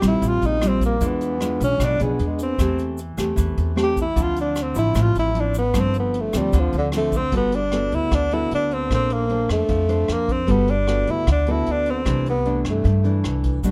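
The recording has little reverb and a dark, warm production. This romantic, sunny bossa nova excerpt is cut from a longer piece. A breathy tenor saxophone sits up front with a mellow subtone, light vibrato and scooped notes, playing a jazz-style solo through the opening section. Beneath it, a classical nylon-string guitar is thumb-plucked, and a woody pizzicato upright bass anchors the low end. A vintage drum kit played with brushes adds a punchy kick, hi-hat and rim clicks with a rolled-off top. A grainy, bright egg shaker stays in the background until 7.3 s, where the music moves into a new section in G major, and it returns briefly at 13.6 s.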